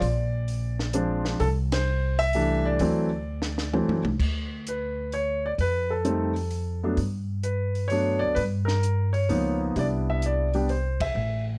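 Swinging in 3/4 at 129 BPM, this jazz piano trio excerpt pairs an up-front concert grand with a deep bass register carrying the melody, a woody, growly pizzicato upright bass with steel strings, and a dark, smooth compact cocktail kit with a high-tuned snare and punchy kick, all in light reverb, with band accents at 1.6 and 10.9 seconds and a drum fill starting at 3.3 seconds over a warm progression from Bb9 to Cmaj7.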